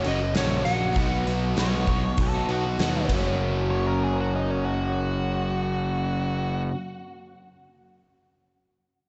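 Classic rock with a confident, sunny mood, this short excerpt opens with a slide guitar melody over a very quiet, shimmering twelve-string acoustic, two overdriven rhythm guitars playing riffs, and a fuzzy, punchy bass pushed up front, all bathed in a lush hall reverb that gives a big arena sound. A gated 80s drum kit with bright cymbals and a punchy kick drives things until 3.2 seconds, while a dark octave-fuzz lead guitar enters at 1.6 seconds with a second line. The slide guitar sings only until 2.7 seconds, leaving the fuzz lead, bass and guitars to carry the remainder.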